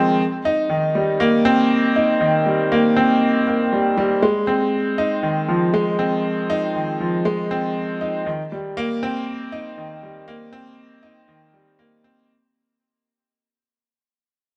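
Moving and cinematic, this short electronica excerpt at 119 BPM in a straight 4/4 features a solo grand piano, present and up front with long sustain, playing between Eb3 and Eb4 in a wet echo-chamber reverb across a drop that runs the full 12.3 seconds, with a fade-out beginning at 4.2 seconds.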